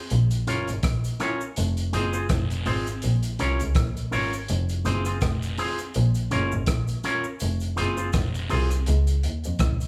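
A band playing live in one large studio gives this short roots reggae excerpt a moderate reverb, with bass, drums and guitar all sitting up front. At 82 BPM in 4/4 with a swung sixteenth-note feel, the uplifting mood rides a steady change between Bbm and Fm before a shift to Db at 8.9 seconds. A bowed double bass carries the low end with a clear, nasal, earthy tone and light vibrato. The breakbeat drum kit of kick, hi-hat and rim click sounds saturated and gritty, with a punchy kick and a rolled-off top. An electric guitar, picked cleanly through an envelope filter, adds dark accompaniment from 0.5 to 8.7 seconds. In the background, cabasa and guiro with egg shaker and group handclaps pass through an analog delay.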